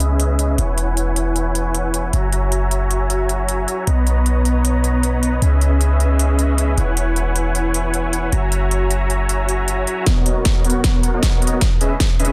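Lush and euphoric, this future bass passage moves in a half-time feel, cut from a longer piece. A huge, thick supersaw riff sits up front, its detuned sawtooth unison layered with triangle and a sub octave, heavily compressed with vibrato, pumping against the sidechain, shaped by a low-pass filter and trailed by tape echo. Beneath it, a deep, boomy 808-style bass with a dark sine body and a noise layer hits with a fast attack and decays, pumping along until 9.9 seconds. A big-room dance drum kit carries crisp, filtered hi-hats and a huge, soft-clipped snare, and at 10.1 seconds a punchy, tape-touched electronic kick enters as a drum fill and a filter sweep on the supersaw drive a build-up. The chords cycle through C#m9, E69, F#7 and Bmaj7 under light reverb, in a dense, heavily limited modern master.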